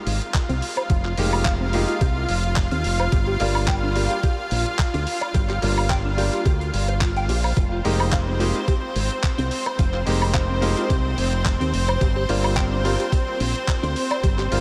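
A thumpy electronic kick sits up front in this sensual, sleek nu-disco excerpt at 108 BPM in F dorian, joined by a warm envelope-filtered fingered bass, a gritty, compressed soul sampler kit of handclaps, hi-hat and woodblock, a lush, detuned unison pad with sidechain pumping over Fm11 and Gm7 chords, a brilliant grand piano with analog delay, and a clean, scooped guitar riff sweeping through a low-pass filter in the background, the mix soaked in huge, dreamy reverb.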